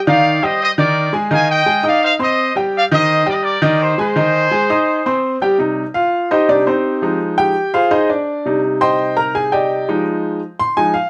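Latin in C minor at 168 BPM, this fiery, danceable passage opens with a punchy, vintage-toned trumpet section carrying the vibrato-laced melody up front over a woody, upright piano accompaniment, with audible action noise, until the horns drop out at 5.2 seconds and the piano takes a solo from 5.6 seconds over minor chords, all captured by close, detailed microphones in light reverb.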